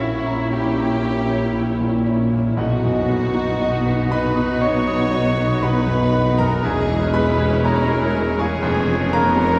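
A clear, polished concert grand piano carries the melody in this lush, lyrical classical excerpt, sitting in the background with an intimate presence, audible action noise and deep bass across its range. At a slow 59 BPM in 4/4 with a rubato feel in B major, the passage moves from an A#dim7 to B at 2.6 seconds, then to C#m/E and C#7/E#. A very quiet, dark and woody studio violin section also carries the melody from a distance, while a rich chamber violin section, a bright clarinet and a pure, straight-toned concert flute weave second lines. Beneath them, a warm, expressive viola section supplies accompaniment and a very quiet, warm French horn section holds sustained chords, with a dark, roomy trumpet adding background stabs. The bass is anchored by a clear, close cello section, a dark tuba and a lush, woody symphonic double bass section, and the whole ensemble is heard from further back in a wet church reverb with a long 3.9-second decay.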